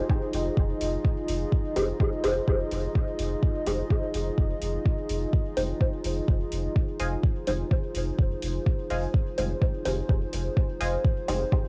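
Deep and nocturnal, this dub techno excerpt at 126 BPM in F minor rests on a single Fm7 chord, with an up-front, tape-warm kick and metallic hi-hats over a round, soft sub bass and a moody, detuned analog pad carrying chorus, sampler grit and sidechain pumping, while a muted, phased chord stab with dub echo enters at 1.8 seconds and a crisp wavetable stab adds a brief riff from 7.0 seconds, all captured as a dry home cassette recording.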